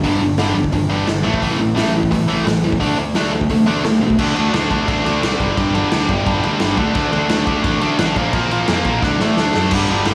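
A tight, double-tracked distorted electric guitar leads this rowdy, rebellious punk rock clip, picking a bright, up-front riff from G2 to D4 at a brisk 174 BPM in straight 4/4. Underneath, a fuzz-laden picked electric bass adds punchy, overdriven weight between G1 and B2, while a raw garage drum kit drives the pulse with crash cymbal, hi-hat, a punchy kick and a medium-tuned snare, its acoustic sound gritty and saturated with a dark, rolled-off top. The chords move through G5, A5 and D5 before the second section shifts to G5, D5 and Bb5, landing on D at 9.0 seconds. A drum fill from 9.0 to 9.7 seconds closes the second section. A light, small-room ambience lends the whole clip a close, garage-like feel as it is cut from a longer piece.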